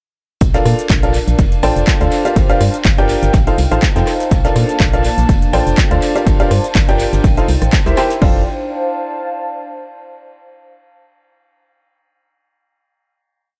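A bright, woody upright piano plays a rhythmic chord riff up front, its action noise audible and its sound pumping with sidechain compression, over an uplifting, euphoric piano house groove that runs until 8.2 seconds, when a final F6 chord rings out. Beneath it, a hollow, organ-like FM bass plays a funky syncopated line, while a punchy, overdriven house kit drives a four-on-the-floor kick with crashes, joined by a second layer of metallic hats, shaker, rim, clap and tape echo. A very quiet, dark brushed kit with snare and ride, a tambourine in the background, and a warbling, nostalgic tape-like pad, whose slowly shifting chords linger to 10.1 seconds, fill out the echo-heavy mix.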